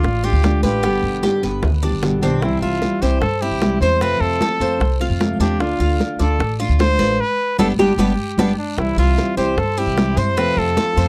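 Cuban son and guajira at 151 BPM in a relaxed C major groove, where a close-miked trumpet with light vibrato carries the melody up front over a woody, thumpy pizzicato upright bass, fingerpicked nylon-string guitar with audible finger squeak, bright metallic tres arpeggios on doubled strings, and background bongos, ringing high-tuned congas and a raspy guiro, all in a dry, close 1970s-style studio sound with a drum fill at 1.2 seconds and a band accent at 7.2 seconds in this short cut from a longer piece.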